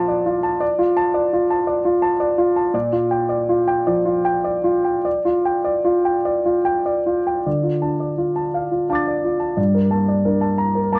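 The recording is close and intimate, with a concert grand sitting up front in a light reverb. This short, wistful piece of neoclassical minimalist piano is cut from a longer work and runs for 11.0 seconds. The solo piano is dark and mellow, with a deep bass, and its range reaches from G2 up to A6. The music moves in 6/8 with a rubato feel, tuned to A4 = 444 Hz. Its harmony drifts from Bbmaj7 to Gm7/Bb, then turns at 7.5 seconds to a second passage that moves from Dm to Gmadd9.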